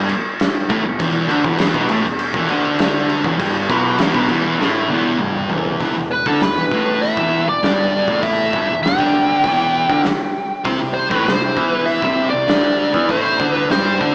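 Heavy and hypnotic, this stoner and doom metal excerpt rides an Em riff from two thick fuzz guitars, one up front and one darker in the background, over a growling, overdriven electric bass with tube saturation and an oversized low-tuned drum kit with a punchy kick and a gritty, saturated tone. A drum fill at 4.6 seconds leads into the second section. At 6.1 seconds a compressed fuzz lead guitar enters up front with wah, distortion and analog delay, and the harmony moves to C5 at 10.7 seconds, with the band sounding live in one large studio room with moderate reverb, as if heard through a small speaker.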